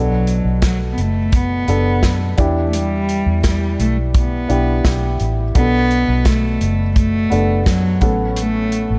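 A dark, lightly reverberant studio sound frames this driving, dramatic piano-driven pop excerpt in B minor at 85 BPM, where a close, bowed cello with vibrato carries the melody over a mellow, slightly detuned upright piano with audible action noise, a round, foam-muted fingered electric bass, and an airy acoustic drum kit with a punchy kick that enters at 0.3 seconds, moving from Bm7 through Em7 and back before landing on Aadd9.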